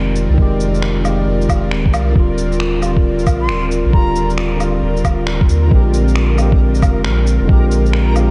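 A cassette-tape haze and a digital ambience frame this short, melancholic, nocturnal future garage excerpt, moving at 135 BPM in 4/4 with a 65% swing on the sixteenths. A clean tine electric piano carries the accompaniment through analog delay over an airy, breathy pad whose detuned, warbling vintage tone is thickened with chorus, and both breathe with sidechain pumping alongside a deep, round, soft dub sub bass that sits up front. The harmony moves from Fm9 to Ebmaj9 and then to Bb13. A muffled, thumpy, pitched-down kick anchors the groove, while an electronic shaker, finger snaps and woodblock, re-recorded in a large room, add a light sheen of percussion. From 3.3 seconds a reversed, granular swelling texture glows faintly in the background with its own reverb. At 3.4 seconds a breathy, bright concert flute offers a brief, unsteady straight-tone phrase through analog delay.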